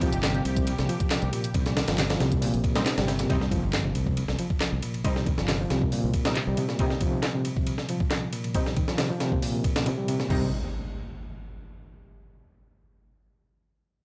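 A barky, overdriven reed electric piano riff fronts this swaggering, funky breakbeat excerpt at 137 BPM, anchored on a C minor chord, over a compressed sampler-style break with a thumpy kick and high-tuned snare, a quieter garage kit of handclaps and hats in the background, and a growly fingered electric bass, while a lush detuned pad holds chords through the opening drop until 3.3 s, when an electronic impact lands and filter sweeps run across the drums, the piano and a bold orchestra-hit-like synth stab, all in a dry, gritty hardware recording.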